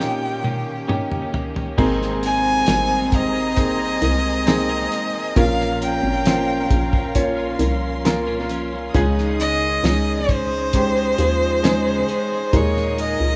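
An echo-heavy mix sits in a small room with light reverb, giving this heartfelt, emotional pop ballad in Ab major a close yet spacious feel at a slow 67 BPM in straight 4/4. It opens with a drum fill during a brief break over an Eb7 chord. At 1.8 seconds the dark French horn section enters with a tight second line, and the hollow, bouncy FM bass arrives with punchy, fast-attack, decaying notes as the harmony moves through Abadd9, Bbm, Dbsus2 and Ebsus4. Up front, a single warm, bowed violin carries the melody with smooth, even vibrato and analog delay, while a clear concert grand piano with deep bass supplies the accompaniment through its own delay. In the background, a clean, compressed twelve-string electric guitar picks arpeggios with delay, and a focused studio string section holds sustained chords. The damped 70s kit plays with dry, dark cymbals, a fat snare and a tight kick under a rolled-off top, in a passage cut from a longer piece.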